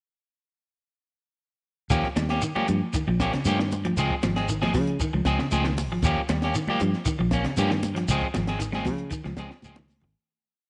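At 1.9 seconds a funky, hypnotic afrobeat groove in Eb mixolydian starts at 116 BPM, with an up-front electric guitar at the edge of break-up playing slightly gritty, picked funk-strumming stabs in upper chord shapes. Underneath, a round, dark, foam-muted fingered electric bass sits up front with a syncopated riff, while a compact cocktail drum kit lays down a smooth afro groove with a punchy kick, a high-tuned snare, hi-hat and a rolled-off top. Ringing, high-tuned congas played with hard hands sit in the background alongside a grainy, mellow shekere, both close and dry. From 2.2 seconds a clean, hollow-bodied semi-hollow electric guitar adds a picked, warm arpeggiated ostinato. The harmony simply alternates between Eb9 and Dbmaj7 in a light, small-room ambience, and the piece fades out from 8.1 seconds, closing on a brief drum fill at 9.8 seconds.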